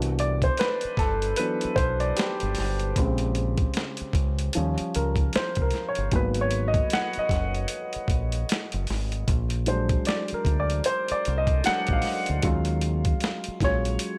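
R&B and neo-soul at 76 BPM in 4/4, this introspective, sultry passage rides a swung sixteenth-note feel, with a woody upright piano taking a solo from start to finish over lush, jazzy harmony that moves from Cmaj9#11 through Bbm7 and Abm9 to Ebm11. A dark, round fingered electric bass sits low and up front, while a gritty, compressed boom bap sampler-style kit supplies hi-hat, a thumpy kick and a medium-tuned snare with a tape-warm character. The close, dry sound keeps all three parts intimate and present in this fragment of a longer piece.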